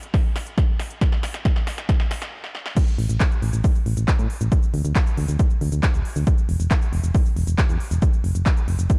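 This snippet of soaring, emotional uplifting trance opens on a build-up from an overdriven big-room dance drum kit, with crash cymbal, handclaps, crisp hats, shaker and snare rolling through drum fills, joined almost at once by a punchy, up-front electronic kick, before a brief stop at 2.3 seconds. The drop lands at 2.8 seconds, and from 3.0 seconds a round, digital FM bass with a fast attack and decaying tone pumps under sidechain. The production is dark and dry, while the layered drums carry the character of a large room.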